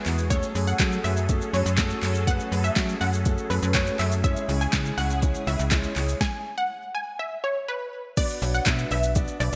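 Driving and bittersweet, this straight-feel dance-pop excerpt has a bright, 1980s-style digital sheen and a lush hall reverb around it. A punchy, detuned sawtooth unison pluck carries the melody with a filter sweep, an analog chorus and a digital delay, while a slap-like FM bass with a snappy, metallic attack sits up front. A smooth R&B kit with a soft kick, sharp snare, crisp hats, claps, shaker and crash is overdriven and treated with gated reverb, and a concert grand piano with deep low end plays the accompaniment under a subtle chorus. Behind them, an evolving, soft-attack supersaw swell holds sustained chords until it drops away at 6.2 seconds. The pluck, swell, piano and bass all breathe with sidechain pumping as the harmony moves from F#madd9 to C#m, then turns to Bm at 8.2 seconds.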